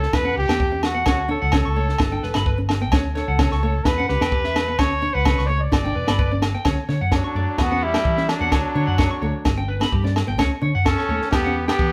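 A band playing live in one room fills a large studio with a moderate reverb in this danceable highlife excerpt, set at 129 BPM in a straight 4/4 in D major. Up front, a breathy trumpet with jazz-style vibrato carries the melody, while a compact cocktail kit pairs a punchy kick with a dry, high-tuned snare. A dark, round, hollow-body electric bass sits underneath, and close, ringing agogo bells keep the percussion going. A slightly broken-up, twangy electric guitar picks arpeggios high above, and a small fingerpicked nylon-string guitar adds accompaniment in the background. The harmony cycles through Emadd9, Dmaj7 and G. At 6.7 seconds the music moves into a new section, and at 7.2 seconds a bright, forceful, close-miked second trumpet joins with a lower line of its own.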